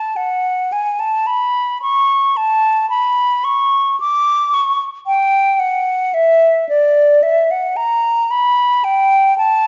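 Rubato and unhurried in 3/4 at around 55 BPM, this solemn, flowing classical fantasia in baroque style is a 9.7-second fragment cut from a longer piece, tuned to A4 = 438 Hz. A lone silver concert flute sits up front, mellow and hollow with a pure metallic core, tongued notes and vibrato, moving between D5 and D6. A wet recital hall reverb with a 1.4-second decay surrounds it, and the top end stops short at 7.5 kHz, giving the sound a soft, rounded edge.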